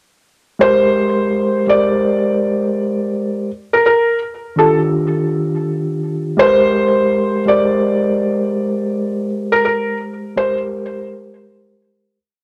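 From 0.6 seconds, a felt-muted upright piano and a mellow tine electric piano enter together in this short, dreamy, nostalgic hip hop piece at 83 BPM, swung and set in Ab lydian over Abmaj9 and Ebmaj9 chords. Up front, the soft, intimate upright piano, low-pass filtered with tape echo, plays a short looping melody until 10.6 seconds. Meanwhile, the clean electric piano, heard through its built-in speakers with cassette tape and a low-pass filter, repeats rhythmic chords in spread voicings with grace notes like a sampled loop. Light small-room reverb frames the dry, gritty recording, which fades out from 9.3 seconds.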